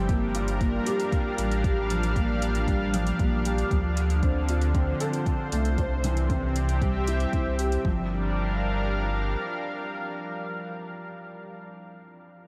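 A lush, detuned sawtooth pad and a felt-muted upright piano with audible action noise open this hypnotic, moving piano and strings electronica fragment, the piano's boxy riff trailing diffuse ambient delay over a round sine sub bass with sidechain pumping, while tape-warm electronic kick and metallic hi-hat drop away by 8.0 seconds and the bass by 9.4 seconds, leaving pad and piano adrift in a dreamy mix soaked in huge reverb.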